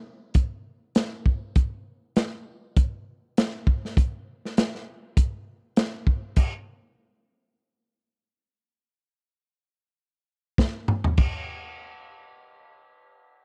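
A lightly swung 4/4 blues groove at 100 BPM comes from a crunchy breakbeat drum kit, its kick, snare, hi-hat, toms and crash cymbal playing from 0.3 seconds, falling silent for a stop at 6.4 seconds, then returning with a drum fill at 10.6 seconds. The mood is mournful and smoky, with a tight kick, medium-tuned snare and dark cymbals that sound saturated and gritty, with a rolled-off top. The dry, close 1970s-style studio sound keeps the kit up front in this short cut from a longer piece.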